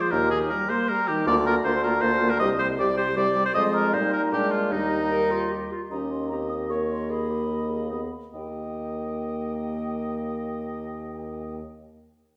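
A quick classical-period movement for wind quintet in triple time, urgent and restless, cut from a longer piece and heard from further back in a reverberant recital hall. A hollow, vibrato-tinged flute carries the melody in the background while a warm oboe sits up front with the second line, a clear, distant clarinet and a punchy French horn fill out the accompaniment, and a mellow bassoon anchors the bass from 0.1 seconds. The playing slows between 5.3 and 8.3 seconds as the harmony turns through darker chords before settling back home.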